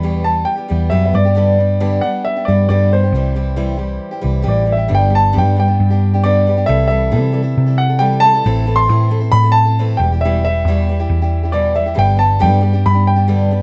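Folk rock with a heartland rock lean, this short excerpt moves at 136 BPM in a straight 4/4 and sits in G major with a nostalgic, warm mood. A concert grand piano carries the melody between C5 and C6, its tone warm and placed up front. Beneath it, a picked steel-string acoustic guitar supplies bright accompaniment, sitting lower in the mix than the other parts. A hollow-body short-scale electric bass, picked and amped, gives a dark, round and punchy foundation that stands forward. All three play throughout the 13.6 seconds, moving from Em through G and C before a second passage, beginning at 4.9 seconds, that passes through C6, Am and Em back to G. The sound is dry and rough, like a home demo, with little reverb.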